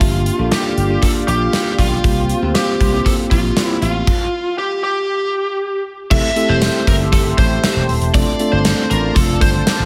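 Heard from the start, a gated 1980s drum kit with punchy kick, bright cymbals, snare and tambourine drives this glossy, nostalgic pop piece alongside an amped electric slap bass, a bell-like tine electric piano and a shimmering, chorused pulse-width pad with a slow attack. An overdriven lead guitar, picked and up front through a small cranked amp, carries the melody over Gm7 and C7sus4, and the progression breaks for a chordless stop from 4.1 to 6.1 s before moving to Am7 and Dm7/F. A polished, airy gated room sound sits on the drums, with light reverb over the whole mix.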